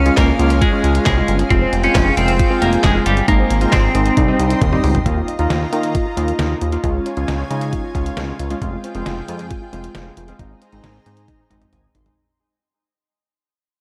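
A bright, twangy twelve-string electric guitar opens this nocturnal, driving synth-pop excerpt at 135 BPM, its clean picked melody carried on tremolo and dub echo over a lush, thick unison pad, a soft round pluck tracing very quiet, dark arpeggios, and a glossy, nasal chorused synth bass. Almost at once a detuned 8-bit digital drum machine joins up front with a thumpy kick, medium-tuned snare, handclaps, hi-hat and toms, its sampler-style sound tape-tinged as if re-recorded in a small room. Analog keys built from square, sawtooth and triangle waves add chorused, dub-echoed accompaniment with ring modulation and a filter sweep. The guitar drops out at 4.8 seconds, a drum fill leads into a new section at 5.1 seconds, and the whole piece begins fading from there over chords moving from Ebsus2 through Db and Fmadd9 to Abadd9. A final drum fill and a keys fill close the passage near the 12-second mark, all set in an echo-heavy mix with light reverb and digital ambience.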